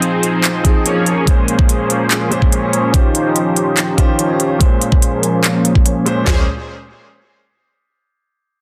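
A half-time 4/4 groove at 144 BPM drives this lush, emotional future bass excerpt in Bb dorian, with crisp hi-hats and handclaps from the start and an up-front trap kit of knocking kick, sharp snare, toms and more claps joining at 0.6 seconds. A huge, bright, detuned sawtooth supersaw riff with chorus, delay, sidechain pumping and a filter sweep rides over an intimate grand piano, itself pumping and delayed, with audible action noise, through Fm7, Bbm9 and Eb13 chords, before a deep, boomy 808 bass lands at 6.3 seconds, all in a dense, heavily limited master with light reverb.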